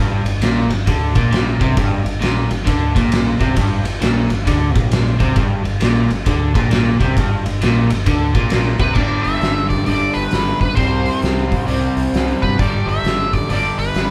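A swung 4/4 groove at 133 BPM drives this gritty, swaggering blues rock and southern rock power trio cut, taken from a longer piece. The oversized, low-tuned drum kit comes in at 0.3 seconds with a fat snare, punchy kick, crash, hi-hat and ride, its saturated, up-front sound set in a bright stone room. From the first moment a crunchy, double-tracked overdriven guitar riffs up front, its picked tone warm, while a growling fingered electric bass, overdriven yet round, holds down the low end. The riff rides a G5 chord before the harmony moves to G, C5 and back to G from 9.0 seconds. At 8.8 seconds an octave-fuzz lead guitar joins with a dark, picked melody coloured by wah, distortion and tape echo, sitting a little below the riff guitar and drums. Light reverb places the band together live in one room.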